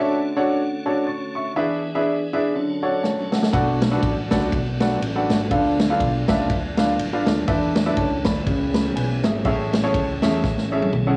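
This jubilant, hopeful uptempo gospel excerpt opens with a clear concert grand piano playing accompaniment up front, its deep bass and short sustain carrying a cassette-tape character. Beneath it, a tonewheel organ holds sustained chords in the background, piping and scooped, lightly overdriven with key click and a slow rotary speaker. At 3.0 seconds a swinging big-band drum kit enters with a fill, bringing a punchy kick, a medium-tuned snare, toms and dark cymbals on the ride, and a hollow-body short-scale electric bass joins at 3.5 seconds with a dark, round, amped tone. The swung feel moves through a chord progression from Dmaj7 and E7 toward Bm7, Dm6 and E7sus4, arriving at Amaj7, with another drum fill closing out the passage. The whole sits in a small, homely room with light reverb, giving it the intimate sound of a cassette home recording cut from a longer performance.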